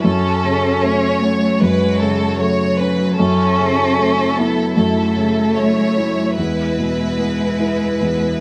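Neoclassical piano and strings in F# minor at a rubato 76 BPM, this reflective, fragile 8.4-second excerpt sets a rich, vibrato-laden violin section carrying the melody up front over an expressive solo cello's second line with soft attacks and portamento, a felt-muted upright piano whose mellow, intimate accompaniment lets its action noise through, and a dark chamber string section holding sustained chords in the background, all captured live in one room with moderate studio reverb as the harmony moves from F#m to A/F# to E.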